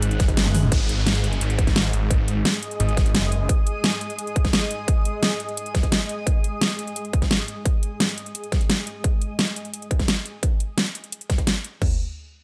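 A straight 4/4 pulse at 173 BPM drives this dark, tense slice of technical drum and bass, cut from a longer piece. Two layered electronic drum kits sit up front: one carries hi-hat, shaker, snare and toms, with a huge snare and metallic hats, while the other adds crash cymbal, toms and a distorted kick. A band accent lands at 0.4 seconds, followed by a drum fill at 0.5 seconds. A snarling, growling saw bass, detuned, saturated and compressed with tube saturation and sidechain pumping, occupies the low end until 3.5 seconds. Above it, a very quiet dark analog pad briefly holds sustained chords over an opening G#5 chord. A mellow, cloudy granular pad drifts through the first 9.0 seconds with its own reverb and sidechain pumping, and a background downlifter sweeps in until the bass stops. The mix stays dry.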